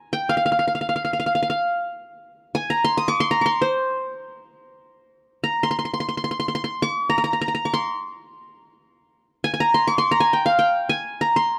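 In free time, this short excerpt from a longer piece unfolds as a melancholic, hypnotic Arabic maqam performance in C maqam bayati, tuned to A4 = 439 Hz. A solo qanun carries the whole passage from 0.0 to 11.6 seconds, ranging from C5 to Eb6, its fingerpicked triple strings sounding bright-edged yet warm and sitting up front. The dry, close 1970s-style studio sound leaves only a touch of small-room reverb around the instrument.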